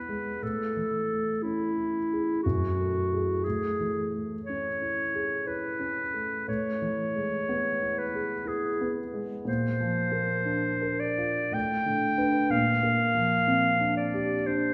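A clear, smooth-topped clarinet carries the melody up front in a pastoral, dreamy impressionist classical duo, moving in a rubato 3/4 through lush chords such as Amaj7, F#m9 and Bbadd9. A dark, mellow grand piano with a vintage, intimate character accompanies it just as closely, its action noise audible beneath the harmony. Both play throughout this 14.7-second passage cut from a longer piece, set in the wet, lingering reverb of a recital hall.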